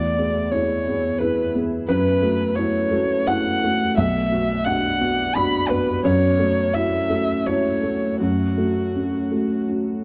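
A dark, lightly reverberant production frames this melancholic, reflective neoclassical excerpt in F# minor at 85 BPM in a rubato 3/4, where a felt-muted upright piano, soft and intimate with audible action noise, carries the accompaniment up front, a single woody violin played sul tasto with vibrato sings the melody close by until 9.6 seconds, and a glassy FM pad with ensemble chorus and a slow attack holds ethereal chords in the background over a progression moving from E through F#m7 and Bm back to F#m.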